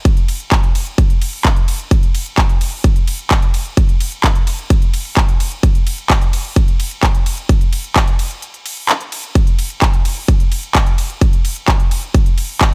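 A punchy electronic kick drum and a big-room dance drum kit of handclaps, crisp hi-hat and ride cymbal start together at 0.1 seconds in this EDM excerpt, which is cut from a longer piece. The tempo is 129 BPM in a straight 4/4, and the mood feels emotional and powerful. Both drum parts sound electronic, layered and produced, with a tape-warm character and studio reverb, and both sit up front in the mix. The kick is the louder and more dominant of the two, with the clap, hat and ride kit somewhat quieter. A short break arrives at 8.4 seconds and lasts until 9.4 seconds before the drums carry on to the close at 12.7 seconds.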